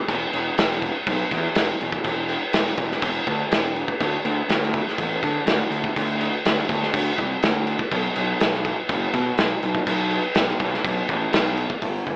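A loose indie drum kit and a fuzz-drenched picked electric bass start together almost at once, setting a blissful, dreamy shoegaze and dream pop groove in a straight 4/4 rock pulse. The drums sit up front with a punchy kick, a medium-tuned snare, dark cymbals across hi-hat and crash, and a pumping studio room sound with a rolled-off top. The bass, also up front, is amped and overdriven, its fuzz adding a thick, furry grit as it spans a range from low E1 to D3. Both parts play through the whole cut from a longer piece, ending at about 12.2 seconds. Light reverb and an AM radio tone give the mix a hazy, lo-fi glow, as though it were drifting out of an old speaker.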